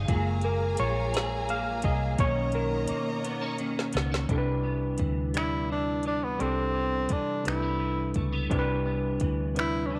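Tender slow R&B excerpt in 6/8 at 57 BPM, where a gritty, barky overdriven reed electric piano takes the lead over lush bowed strings, a dark picked clean electric guitar with ensemble chorus, a round foam-muted fingered bass and a soft, tape-warm electronic kit of finger snaps, woody snare and metallic hats, moving through Gbmaj9 and Cbmaj9 chords until a drum fill ushers in Cmaj9 at 4.3 seconds, when the strings drop out and a breathy, whispered tenor saxophone enters at 5.4 seconds with scooped notes and mellow vibrato, all in light digital reverb.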